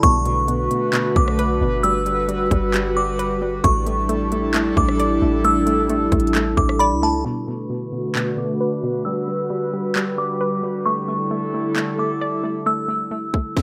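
An airy, breathy pad with a sidechain pump holds sustained chords up front in this hazy, ethereal half-time cloud-rap excerpt, as a glassy, warbling FM bell sings a tremolo-touched melody through tape echo, a hollow, bouncy square pluck spins echoing arpeggios, a trap kit with a hard-clipped kick, sharp snare, crisp hats, claps and rim clicks sits up front, and a deep, boomy 808 bass drops out at 7.2 seconds just as a filter sweep begins, all in a rough home-demo mix with light reverb.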